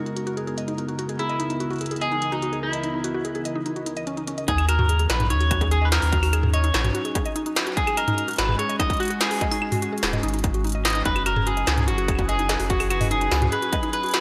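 A twangy, slightly broken-up electric guitar carries the melody up front from 1.2 seconds, its lines trailed by digital delay over a warbling, detuned tape-like pad holding sustained chords and a woody, FM mallet-like pluck spinning arpeggios, both of which open under a filter sweep. This cerebral, intricate IDM excerpt in Eb phrygian moves at 146 BPM in straight 4/4, driven by an industrial kit of clanging snare, crisp hats, claves and toms dressed in gated reverb, while a bubbling, resonant stepped-filter texture sits in the background. At 4.5 seconds a round sine sub bass and a distorted electronic kick join, all set in a lush hall within a bright 1980s-style digital production.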